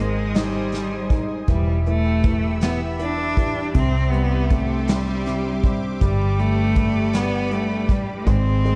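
A swaying, romantic six-eight pop ballad in 6/8, heard as a short cut from a longer piece, where a rich, bowed cello with vibrato carries the melody up front, its slapback echo matched by the present baby grand piano's accompaniment. Around them, a lush, warbling sawtooth pad holds sustained chords with chorus, a bright, compressed direct-recorded electric guitar picks very quiet arpeggios, and a foam-muted vintage bass supplies a dark, round low end. A soft brush drum kit with a tight kick and a rolled-off top enters at 0.3 seconds, and the whole is set in light studio reverb as the chords move from Ab through Em and Cadd9 to G.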